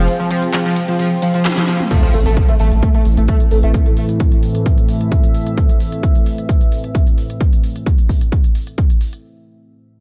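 Intense and industrial, this 131 BPM peak-time techno cut in A harmonic minor opens on an Fm chord with a gritty, screaming, guitar-like lead riff over a thick saturated sub bass and a moody, detuned ambient pad, while a tape-warm techno kit brings handclaps plus pumping smooth hats, cymbals and toms through a break and drum fill, until a heavy, up-front electronic kick lands on Am at 1.9 s with a very quiet impact and a filter sweep on the lead, and an evolving analog drone with a moving notch joins at 3.0 s under light reverb.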